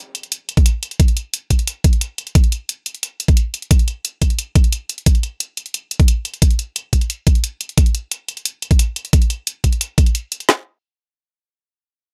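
A straight 4/4 pulse at 177 BPM drives this dark, technical drum and bass excerpt, cut from a longer piece and built entirely from percussion. An electronic hi-hat enters at 0.1 seconds, layered and overdriven, having been re-recorded in a small room. At 0.6 seconds the drum and bass kit arrives up front, its knocking kick and woody snare layered, produced and pushed through overdrive. The hi-hat sits well beneath the kit in the balance, and the whole has a dry sound with little reverb. The mood is mechanical and dark, with the drums running through the main section until about 10.5 seconds before a brief closing section takes over.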